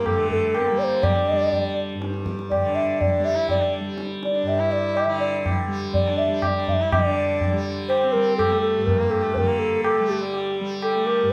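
Introspective and solemn, this Hindustani classical excerpt in raga Kafi moves in a steady three-beat metre, with an airy, hollow bamboo bansuri carrying the melody over a softly plucked, buzzing tanpura drone and high-tuned, ringing tabla. A clear, biting bowed sarangi traces a lower second line with light vibrato and gliding portamento, its sympathetic strings adding resonance. The close, detailed sound sits in a moderate recital-hall reverb, and the music shifts into a new section at 6.9 seconds.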